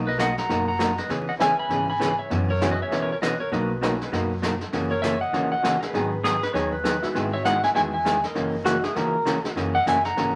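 A jangly, detuned honky-tonk upright piano sits in the background as a dark, up-front hollow-body jazz guitar, a woody, thumpy pizzicato upright bass and a brushed drum kit with a rolled-off top open this cheerful, down-home western swing excerpt. A clean lap steel guitar carries the melody up front with fingerpicked slide and volume swells, while a compressed pedal steel adds a second line from 6.2 to 9.5 s, and the piano drops out at 9.1 s. Vinyl crackle and a moderate studio reverb give the swung country groove an old-record feel.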